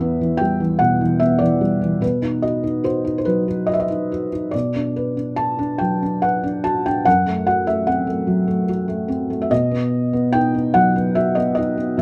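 Classical solo piano, melancholic and wistful, in which a felt-muted upright piano plays a lyrical line with rubato at around 73 BPM in 3/4 across a range from E2 to A5, its thick-felt, dark, intimate tone sitting up front in a dry, closely miked sound that captures audible action noise, over chords moving from Em through B, Bm and F#dim before returning to B in this 12-second excerpt cut from a longer piece.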